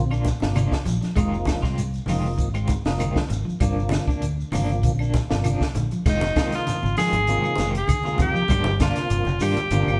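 This defiant, intense afrobeat excerpt opens with a fat, key-clicking tonewheel organ through a slow rotary speaker with overdrive and chorus vibrato, a clean picked guitar playing arpeggios in spring reverb, and a direct fingered electric bass. These are soon joined by tremolo-treated stabs from a slightly broken-up guitar, very quiet woody claves, a grainy shekere, thin-skinned, low-tuned congas, and a compact cocktail kit with a punchy kick, high-tuned snare and dark cymbals. At 6.1 seconds a bright alto saxophone steps up front with a light vibrato for a vintage, pop-style solo melody, the whole band playing live in one room wrapped in a wet stone reverb.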